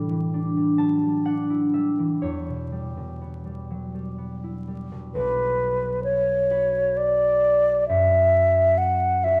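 Impressionist classical duo in a hazy, wistful, rubato 6/8, where the concert harp opens alone with thumb-plucked, ringing chords before the hollow, airy silver flute enters at 5.1 s with a tongued, vibrato-tinged melody, both parts up front in a reverberant recital hall beneath vinyl crackle, in a short fragment cut from a longer piece.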